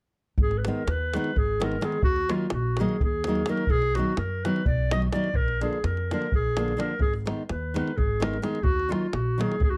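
Balkan folk in the manner of a wedding band, this short cut from a longer piece feels bittersweet and fiery, driving along in 7/8 at 254 BPM counted in eighths, in Ab Dorian with a raised fourth and tuned to A4 = 444 Hz. A warm, classical-style clarinet carries the melody as a solo voice, sitting up front yet sounding distant and roomy. A bright, full-bodied nylon-string guitar enters at 0.7 s with fingerpicked accompaniment, its finger squeaks audible. Beneath it, a dark, woody upright bass plays pizzicato on gut strings with a thumpy tone, while a tight davul sounds close and dry. The harmony moves from Abm to Ebm, B and Bb before returning to Abm and Ebm, all set in a moderate small-room reverb, with the passage ending around 9.8 s.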